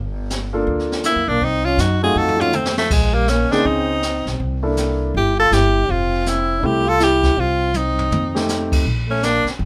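Playful and warm, this short cut from a longer small-group swing and bop tune moves at 161 BPM in F major with a lilting swing feel. A woody, thumpy pizzicato upright bass opens the track, joined almost at once by a brushed drum kit with dark cymbals, a high-tuned snare and a boomy kick, and by a polished grand piano comping up front, with drum fills at 2.2 and 7.7 seconds. From 1.1 seconds a punchy, forceful tenor saxophone with vibrato carries the melody, while a breathy, whispered trombone with a soft attack traces an intimate second line beneath it over a light reverb.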